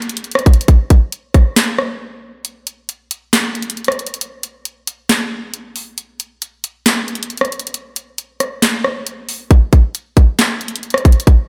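A trap drum kit carries this short, melancholic and brooding hip hop cut in a half-time feel. Its electronic kick, snare, rim click, handclaps and hi-hat sit up front, with a hard-clipped kick, a sharp snare and bright hats re-recorded in a small room under light reverb. A brief break arrives at 2.0 seconds, and the kit plays until 11.4 seconds.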